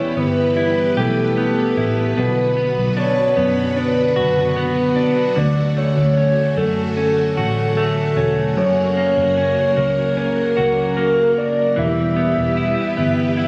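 Heard through a phone placed in the room, this short dream pop passage sits in a lush hall reverb with a long 2.8-second tail and compression, giving it a floating, dreamy haze. At a relaxed 75 BPM in straight 4/4, it moves through Em, Bm, Dmaj7 and F# before returning to Em. A soft, octave-layered synth lead carries the melody up front, its triangle and sine tones doubled by a sub octave and colored with vibrato, chorus and digital delay. Beneath it, a clean electric guitar plays dark, fingered arpeggios with subtle chorus and delay. A string machine voicing violins holds shimmering, sawtooth-edged chords with a soft attack and ensemble chorus. From 0.2 s, a vintage foam-muted electric bass adds round, punchy low notes to the texture.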